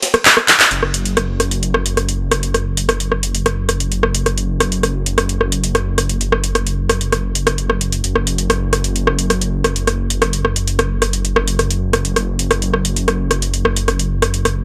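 Hypnotic and driving, this excerpt of peak-time techno runs at 131 BPM in a straight 4/4. It opens with a brief break in which an acoustic brush kit plays hi-hat and a high-tuned snare with a natural studio-room sound, thinned by high-pass filtering. A drum fill at 0.5 seconds and a band accent at 0.6 seconds lead into the main section at 0.7 seconds, where a detuned saw bass enters on a thick, menacing F#1 with a beating, sustained tone and a fast attack. An electronic, layered drum kit of handclaps, metallic hi-hats, ride cymbal and rim click sits up front from the very start, joining the brush kit in the break and then carrying on with the bass. The dry, gritty hardware sound carries little reverb.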